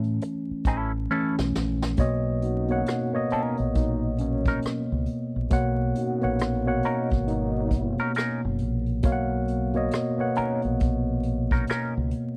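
A worn, slightly out-of-tune tine electric piano opens this soulful, smooth neo-soul excerpt in B major, its clean tone coming up front through built-in speakers and featured in the first 2 seconds over a rootless B9sus4 while a drum fill plays from 1.1 seconds. At a relaxed 68 BPM in 4/4 with a swung sixteenth-note feel, a vintage brush drum kit sets a natural small-room groove of hi-hat, tight kick, rim click and medium-tuned snare, its top rolled off. A deep dub fingered electric bass sits low with a dark, round, punchy sound, and a semi-hollow electric guitar carries a compressed, hollow-body second line through wah. From 2.4 seconds a close-miked trombone section adds tight, jazz-style stabs over the Bmaj9 harmony that arrives at 2 seconds. The dry, close 1970s-style studio sound carries vinyl crackle and very little reverb.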